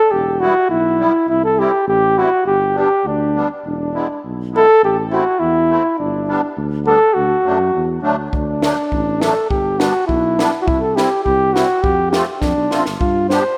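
Festive and bouncy, this short alpine folk dance-band piece in G major moves at 103 BPM in a straight 2/4. A mellow flugelhorn carries the melody up front in a classical style, joined almost at once by a dark tuba on the bass line, its soft attack, smooth top and light vibrato giving the low end a rounded glow. A reedy musette accordion sits mid-forward with a shimmering tuning, filling in the accompaniment as the chords move from E minor through C, G and E7 toward D, then on to F before settling back on G. A compact cocktail drum kit joins at 8.3 seconds, dry and acoustic with a punchy kick and high-tuned snare, and adds a fill at 12.4 seconds. The parts sit in a moderate, lush hall reverb, though the overall mix has the rough feel of a home demo, and the clip is cut from a longer piece.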